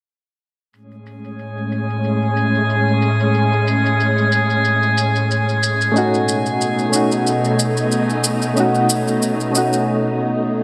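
Bathed in a lush hall reverb with a bright 1980s-style digital sheen, this relaxed, smooth sunset chillout excerpt moves at 92 BPM in A lydian with a light sixteenth-note swing. A filtered electronic shaker starts at 0.7 s, soon joined by a silky, warbling string machine holding up-front Amaj7 chords with ensemble chorus, while a glassy texture of drifting overtones floats above with chorus and its own reverb. At 5.9 s round, mellow electric-piano-like synth keys enter with chorus, tremolo and digital delay as the harmony shifts to B7.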